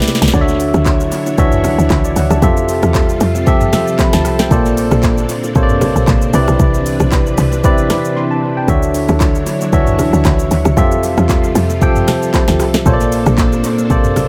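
An amapiano groove with a warm, soulful mood, cut from a longer piece and set in a swung 4/4. It opens on a short drum fill from the electronic afro-pop kit, whose deep kick, sharp snare, metallic hats, handclaps, rim clicks, shaker and toms sit up front with dub echo. A tight, punchy log drum bass with a fast attack and decaying tail carries the low end. A bright, barky tine electric piano, lightly overdriven and treated with dub echo, plays the accompaniment through chords such as Dmaj9, Fmaj9, Bbmaj9 and Cmaj9. A lush, vintage string machine with ensemble chorus enters at 0.8 seconds, holding slow-attack sustained chords beneath, while very quiet, close and dry congas and bongos add acoustic percussion. The mix is dry of reverb but echo-heavy, with a brief break at 8.2 seconds before the progression returns.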